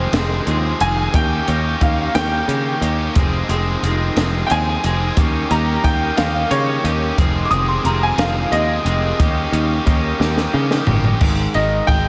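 A moody, restless indie rock passage in 6/8 opens with a bright upright piano carrying the melody up high, its woody, worn, slightly detuned tone dressed in slapback echo and digital delay as it solos through to 11.2 seconds. Beneath it, two electric guitars play riffs: one overdriven and picked with slapback echo, the other twangy, compressed and slightly broken-up through a small old amp, treated with analog chorus and delay and set in the background. A picked electric bass sits up front with a growly, foam-muted sound, while a very quiet combo organ holds buzzy, vintage chords with light vibrato until 11.2 seconds. A compact cocktail drum kit, dark and smooth with a high-tuned snare and punchy kick, plays throughout and adds a fill from 10.2 seconds. The chords move between Fm7 and Eb7 before landing on Ab5, and a lush hall reverb gives this fragment of a longer piece a big arena sound.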